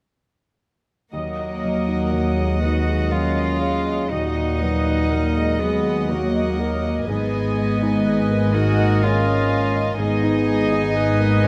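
In a free, rubato 3/4 that breathes rather than pulses, this short cinematic cue cut from a longer piece unfolds in a moving, sorrowful mood over two chords, Ebm giving way to Abm at 7.1 seconds. A solo cello carries the melody, bowed sul tasto with a soft attack and a pure, floating tone, joined on the melody by a studio violin section that sits in the background. A classical-style clarinet and a second violin section add a gentle second line, while a viola section holds a single high note as accompaniment. Underneath, a clear, natural grand piano spans a broad range in the background, a mellow French horn section sustains chords, and a chamber double bass section with light vibrato joins a studio cello section to anchor the bass. Every part sounds together from 1.1 to 11.5 seconds, captured with close, detailed microphones and a moderate scoring-stage reverb that gives the strings an intimate yet spacious glow.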